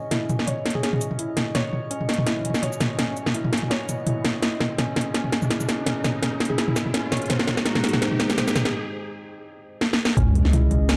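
A dark, warm production sits in a moderate digital room, giving this cut from a longer half-time drum and bass track in C# minor at 167 BPM a moody, spacious air, with a lightly swung sixteenth-note feel. A deep, detuned analog pad holds sustained chords in the background, roughened by 12-bit sampler grit, chorus and sidechain pumping. Above it, a felt-muted upright piano plays soft, intimate arpeggios through a low-pass filter sweep and dub echo, its action noise audible, while an eerie, metallic inharmonic drone hangs behind. The up-front, tape-toned drum kit builds with fills of cracking snare, metallic hats, shaker and toms, and a round, keys-like FM lead adds brief chorused phrases. A riser climbs from 1.9 seconds, a break arrives at 8.7 seconds before a final drum fill at 9.8 seconds, and at 10.2 seconds a knocking electronic kick and a growling, buzzy 808-style bass hit on C#2 to land the impact back on C# minor.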